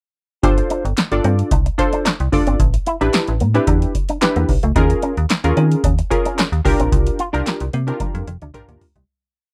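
Early-eighties boogie funk at 111 BPM in G dorian, slick and danceable, built on an electro analog drum machine's deep kick, punchy clap-layered snare and metallic hats, a fat, metallic FM bass line with syncopated bite, a punchy, detuned sawtooth polysynth stabbing rootless chords with grace notes and a filter sweep, and a bright, twangy envelope-filtered guitar picking a muted single-note riff in lush chorus, all cut dry and close before a drum fill at 8.0 seconds closes a fade-out that begins at 6.9 seconds.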